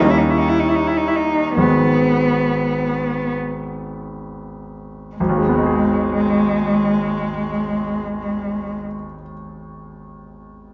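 A rich, bowed cello sings a yearning, elegiac melody with vibrato, soft attacks and portamento over bright, brilliant grand piano accompaniment in this romantic classical excerpt in G# minor, a slow, rubato 6/8 at 32-39 BPM that slows over its opening 5.2 seconds as a D#7 chord gives way to G# minor, the cello falling silent at 8.8 seconds while the piano carries on to 10.7 seconds, the recording set in a wet stone-room reverb and colored by the warbling pitch drift of worn cassette tape.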